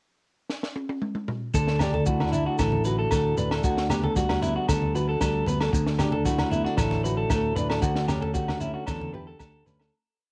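Highlife guitar band music with a sunny, joyful mood, moving at 114 BPM in a straight 4/4 in D major, heard here as a whole short piece recorded at home on cassette in a small room. A compact cocktail drum kit opens with a fill at 0.5 seconds, its punchy kick and high-tuned snare dry and up front, before the groove settles in at 1.5 seconds over chords moving from D to Gmaj7/D and on to A7/D. There, the electric guitar through a small old amp plays a bright, twangy, slightly broken-up picked ostinato of arpeggios with tape echo, while a dark, full-bodied nylon-string guitar fingerpicks an alternating-thumb accompaniment, finger squeaks and all. A round, fingered electric bass carries a dotted figure down low, and percussion fills the background: ringing agogo bells keep a bell time line, low-tuned congas with a thick, saturated skin play a loose pattern, and grainy, vintage-sounding maracas shake softly underneath. 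The piece fades out from 7.8 seconds to its close.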